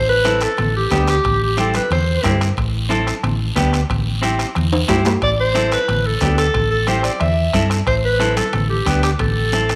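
Bathed in a moderate echo-chamber reverb with small-room ambience, this passionate, driving cumbia fragment puts a clear, forceful clarinet up front, soloing in a jazz style with vibrato, scooped notes and a smooth top, dropping out at 2.4 seconds and returning at 5.2 seconds. Beneath it, a dark, round hollow-body electric bass sits up front while a clean, picked electric guitar comps through a cycling Am, G/A and C/A progression. Ringing metal-shell timbales and a soft-beater bombo stay in the background, with a raspy guiro and very quiet, distant congas struck with hard hands, and a drum fill arrives at 4.7 seconds.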